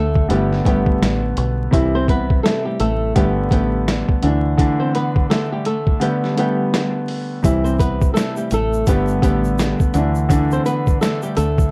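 A swung boom-bap groove from a compressed, pitched-down sampler kit with a thumpy kick, entering at 0.2 s and dropping its kick between 6.0 and 7.4 s, drives this nostalgic, confident hip-hop excerpt, where a round, foam-muted fingered electric bass sits beneath a dark, vintage grand piano colored by cassette tape, a fingerpicked flamenco guitar carries the melody over a Gadd9, C and Dsus2 cycle, and a grainy tube shaker slips into the background at 7.4 s, captured in a dry, gritty recording dusted with vinyl crackle.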